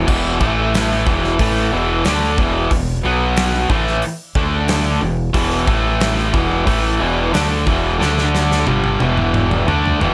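Powerful and swaggering, this brief hard rock excerpt pairs an up-front overdriven semi-hollow guitar with a tight distorted guitar on a picked riff over power chords, as a growling fingered bass and a gated 80s drum kit with punchy kick and bright cymbals in an airy stone room drive toward a drum fill at 8.0 seconds.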